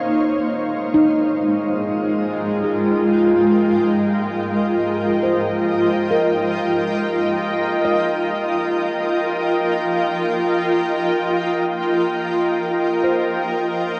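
A blurred, evolving granular cloud pad sits up front in this ambient excerpt at 70 BPM in Eb major, holding slow-blooming sustained chords that move from Abmaj9 to Eb at 7.0 seconds in a weightless, warm mood. From 0.9 seconds a ringing, meditative handpan plays fingertip arpeggios in the background, its band-limited, vintage tone carried on tape echo as it fades out. A wet shimmer reverb and the warble of worn cassette tape give the whole passage a drifting, hazy character.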